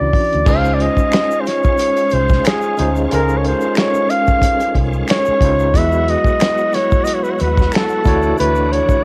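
R&B and neo-soul at 91 BPM in Db major, this sensual, relaxed clip from a longer piece has a lightly swung 16th-note feel, a small-room home cassette sound and light reverb. A close-miked, jazz-style flugelhorn carries the melody up front over a gritty, barky tine electric piano with fast tremolo, a round, punchy foam-muted electric bass, and a dry soul drum kit with dark cymbals, a tight kick, snare, hi-hat, crash and finger snaps. A shouting tonewheel organ with fast rotary speaker and chorus vibrato holds sustained chords from 0.4 seconds, a tube shaker and finger snaps sit in the background from 0.5 seconds, and the harmony moves from Dbmaj9 to Emaj9 at 5.7 seconds and then to Dmaj9.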